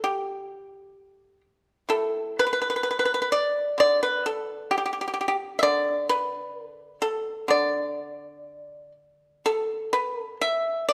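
A solo pipa, plucked with fingerpicks, sits up front with a percussive, acoustic voice, ranging from A2 to E5 in this flowing, elegant short cut from a longer piece of Chinese traditional music. Set in the D zhi mode at around 64 BPM in 2/4, the playing moves with a free rubato feel. A moderate recital hall reverb surrounds the instrument, and a new passage begins at 9.4 seconds before the cut ends at 10.9 seconds.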